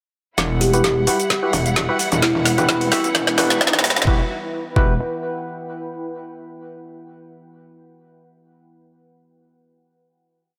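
At 0.4 s a metallic, aggressive wobble bass hits up front together with a knocking four-on-the-floor kick, a garage kit of woody snare, metallic hats and cabasa, and a lush symphonic string section holding sustained chords with vibrato and a smooth top, all riding a swaggering, bouncy bass house groove with a light swing. The FM bass is saturated and compressed with chorus, shaping modulated phrases with changing wobble speed, while the strings and the organ-like stabs pump against the kick. A bright, woody kalimba plucks short answering phrases in the background through a delay, and hollow, mellow organ stabs land in syncopated chords, one shape moved in parallel under a filter sweep. The whole passage is a build-up with a drum fill and sweeping filters, as a deep, moody pad of detuned sawtooth and sine with a sub octave fades in and a very quiet electronic riser adds transition effect. 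From 4.1 s the piece settles on a final chord, with the dark, chorused pad's long release carrying on to 5.9 s in a small, lightly reverberant room.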